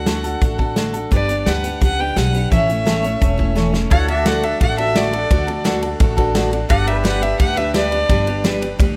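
Honky-tonk and classic country at 172 BPM in D major, nostalgic and sunny, with a clear, focused fiddle soloing up front over a bright, picked steel-string acoustic guitar, a woody, thumpy upright bass and a natural drum kit with a punchy kick that plays a short fill just before a clean pedal steel guitar enters in the background at 3.9 seconds and a dark, boxy grand piano follows at 4.3 seconds, all captured by close, detailed microphones with light reverb.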